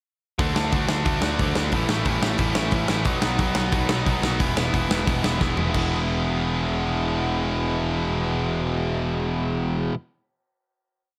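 A straight, driving two-step groove on a big, punchy rock drum kit propels this short, upbeat and rebellious punk rock piece, as two tight, bright distorted guitars pound out eighth-note barre chords and power chords over a growly fuzz bass through a D, A, B, E progression, until a drum fill at 5.4 seconds leads into a final chord held by the guitars and bass from 5.7 seconds to the close at 9.9 seconds.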